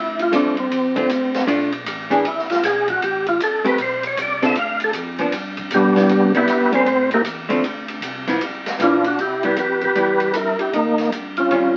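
A percussive tonewheel organ leads this swinging, greasy soul jazz organ trio excerpt, its up-front melody lightly overdriven, with second harmonic percussion, chorus vibrato and a slow rotary speaker, and it takes a solo from 0.0 to 9.2 seconds. Beneath it, a second tonewheel organ supplies a full bass line in the background, also overdriven and turning through a slow rotary speaker. A dark, clean archtop guitar, picked and compressed with a hollow-body tone, sits up front as accompaniment. An open acoustic drum kit swings on hi-hat, ride, snare and a boomy kick, its cymbals dark and its snare medium-tuned. The chords move through minor sevenths and a half-diminished turn before settling on Cmaj7 and closing on Eb9, all heard through a small, wet room and the crackle of a very old 78 rpm record.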